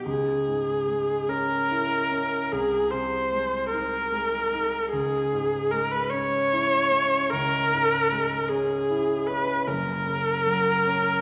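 Romantic classical music for viola and grand piano, this lyrical fragment of a longer piece moves at a slow, rubato 50 BPM in dotted quarters in 12/8, tuned to A4 = 439 Hz, with harmony passing from C#m through G#/B# and back to C#m before reaching F# near 9.7 seconds. The solo bowed viola sings the melody up front with expressive vibrato and portamento, while the concert grand accompanies underneath with an intimate, polished tone, deep bass, long sustain and audible action noise. Both are heard from further back in a reverberant recital hall with a 1.8-second decay, and vinyl crackle lends the recording a warm, aged patina.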